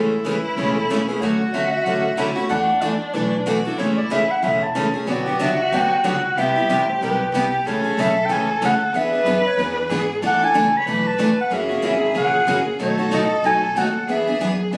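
Swinging and lively, this 186 BPM acoustic string swing excerpt in A major sets a dusky, subtoned clarinet melody with scooped notes over a smooth, bowed violin second line, a bright, boxy parlour guitar up front and a fuller jumbo guitar further back, both picked with finger squeak, while a woody, thumpy upright bass anchors the bottom, all heard through moderate studio reverb with a phone-in-the-room character as the harmony moves from Amaj7 toward a closing run of F#7, B7 and E7.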